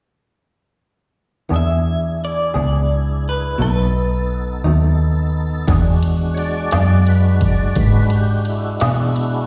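At 1.5 seconds a slow blues in 12/8 opens in E mixolydian at 57 BPM, with a dark, foam-muted bass sitting round and punchy up front beneath an E7 chord. An electric guitar through a small old amp plays accompaniment, slightly broken-up and lo-fi, with tremolo and slapback echo, while a second guitar of the same kind carries a twangy, compressed melody from 1.6 to 5.3 seconds, also with tremolo and slapback echo. A tonewheel organ holds full, lightly overdriven chords through chorus vibrato and a slow rotary speaker, and the harmony moves to B7 before returning to E7. From 5.7 seconds the organ takes a solo as an organic electronic drum kit enters with a deep kick, a woody snare and ride cymbal. The gritty, swaggering short cut sounds like a live gig heard through the venue's PA, with recital hall reverb around the band.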